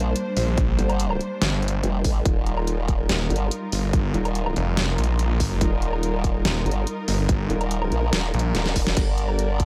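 Chaotic and heavy, this short cut from a longer heavy wobble dubstep track moves at 143 BPM in a half-time 4/4 feel, with tuning set slightly below standard at A4 = 439 Hz. A dark, woody studio string section holds bowed, soft-attack chords with light vibrato throughout, pumping under sidechain compression as the harmony shifts from G minor to Ebadd9 and back to G minor at 9.0 seconds. Up front, a formant-sweep wobble bass built from pulse and sine tones carries chorus and overdrive, joined at 0.4 seconds by a snarling, growling sawtooth bass of detuned unison voices with a moving notch, bright and distorted. The drums combine a layered, overdriven dubstep kit with a deep snare, crash, hi-hat and woodblock, plus a punchy electronic kick that arrives at 0.6 seconds, both re-recorded in a small room. A drum fill lands between 8.5 and 9.0 seconds, the moment the saw bass drops away, and the whole mix sits in a dark production with light reverb.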